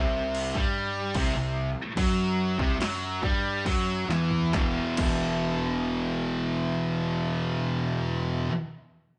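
Stoner and doom metal in E minor at 67-76 BPM, this hypnotic, ominous cut from a longer piece pairs two thick fuzz guitars on a distorted, picked riff, one dark and the other up front with a warm edge, over a growly, overdriven fingered bass with a bright, direct-and-amped sound. A dry analog drum machine with a punchy kick and snare, plus crash cymbal and toms, plays from 0.3 to 5.2 seconds, slowing down through the opening and closing that stretch with a fill at 4.1 seconds before the harmony moves from C5 to E5 at 4.5 seconds. The band sounds as if playing live in one room with light reverb and a muffled top end.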